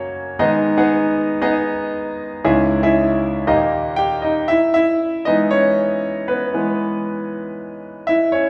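A straight 4/4 pulse at 117 BPM carries this short pop excerpt, which feels earnest and bittersweet. A concert grand piano is the sole instrument, playing alone from start to finish across a span from C#2 to G5. Its tone is clear and polished, with a deep bass, a short sustain and an up-front, present placement. The harmony moves through G#m, C#m and D# before settling on E at 4.5 s, where a second section begins and the piano carries on by itself until 8.5 s. A large studio reverb with a 1.3-second decay gives the sound a wet, roomy quality, as if captured live in a single space.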